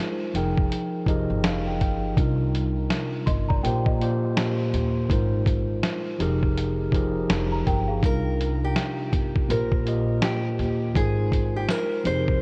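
Lo-fi hip hop at 82 BPM with a swung 16th feel, this reflective, melancholic excerpt sets a mellow tine electric piano with cassette-tape colour up front over chords such as Fm11 and Cm11, joined by a woody pizzicato upright bass and a muffled, compressed sampler-style drum kit with a thumpy kick, while a boxy, fingerpicked nylon-string guitar with finger squeak and tape echo carries the melody, falling silent after the opening second and returning at 8.1 seconds, and a delicate, bell-like celesta with tape echo adds a faint second line from 3.3 seconds, in a dreamy mix soaked in huge ambient reverb.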